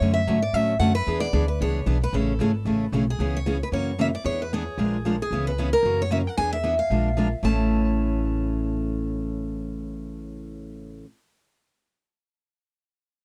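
Swinging and charming, this brief cut from a longer jazz manouche piece moves briskly at 227 BPM in A major with a swung feel. A bright picked steel-string acoustic guitar carries the melody with a touch of tape echo, while a second picked guitar with fresh, squeaking strings supplies the accompaniment and a woody pizzicato upright bass anchors the low end, all three sitting up front. The dry, close 1970s-style studio sound with light reverb passes through three short sections, cycling through chords such as C#m7, F#7 and Bb7 before landing on A at 7.4 seconds.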